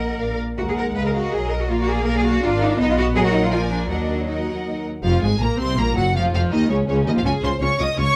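A dark, lightly reverberant studio sound frames this stormy, urgent classical-period movement for string orchestra, cut from a longer piece, racing at 163 BPM in 3/4 with rubato in Eb minor before turning to Bb minor at 5.0 s, as a distant violin section carries the smooth vibrato melody over a lush, expressive second violin line, a close viola accompaniment, a rich, distant cello bass and an up-front double bass section.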